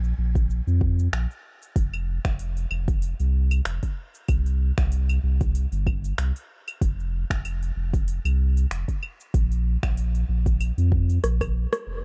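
Organic downtempo at 95 BPM in 4/4 with a light swing on the sixteenths, this short cut from a longer piece has a warm, hypnotic mood and a dark, dry production. A round, sine-like sub bass sits up front with fast attack and sustained notes, joined from 0.4 seconds by a deep electronic kick, while a quieter afro-pop kit of claves, finger snaps, metallic hi-hats, rim clicks and shaker fills in the texture. A drum fill starts at 11.2 seconds and leads into a band accent at the close.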